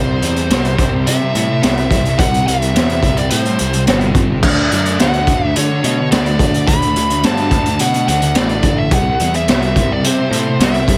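Wistful and blissful, this short cut from a longer rock piece leans into shoegaze and dream pop, with a thick, dark fuzz guitar riff, double-tracked and drenched in lush chorus, sitting under a nasal lead guitar whose parked wah, overdrive and digital delay carry the melody over chords moving from C to D and back to C. A bright, growly fuzz bass holds the low end, while a raw garage drum kit enters at 0.2 seconds with a boomy kick, high-tuned snare, hi-hat and crash, sounding gritty, saturated and up front with a rolled-off top. The whole is wrapped in small room ambience.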